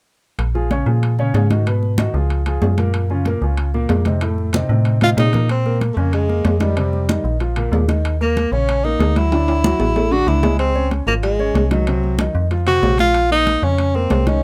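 A metallic FM bass opens this sultry, fiery Afro-Cuban jazz excerpt at 188 BPM in Bb minor, its digital, fast-attack notes decaying and sitting up front, joined from the start by bright, damped congas in the background and close, ringing metal-shell timbales. A warm grand piano enters just after at 0.5 seconds, adding natural accompaniment over a progression that moves from Bbm7 through Abm7, Db and Gbmaj7 to F7. A drum fill at 5.0 seconds brings in a breathy tenor saxophone that takes the melody up front, its mellow subtone colored by vibrato and scooped notes in a jazz style. The harmony then shifts through Bbm9, Ebm7 and Dadd9, with a second fill around 9.3 seconds before the progression settles on Bbmadd9. The sound is dry, with little reverb, and the excerpt is cut from a longer piece.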